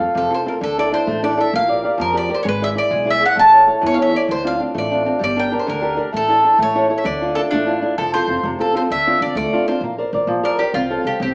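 Romantic and passionate, this short cut from a longer Italian folk serenade sways in a straight 6/8, with a woody, double-strung mandolin carrying the picked melody up front over a dark, fingerpicked flamenco guitar and a softer pizzicato upright bass. A second, bright mandolin line slips in briefly from 7.4 to 8.5 s, spanning the start of a new section at 8.0 s. The band sounds as if it is playing live in one room, with a moderate large-studio reverb and a small-speaker character.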